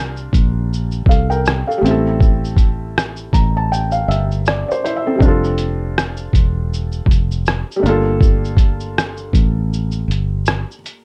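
A swung 80 BPM lo-fi hip hop groove in G dorian sets a hazy, nostalgic mood in this dark, dry fragment of a longer piece, where a muffled, pitched-down sampler kit with a thumpy kick, hi-hat, rim click and shaker sits up front beside a round, foam-muted fingered electric bass and a soft, felt-muted upright piano with audible action noise and cassette-tape colour, moving through C9sus4, Am7, F69 and Gm9 chords.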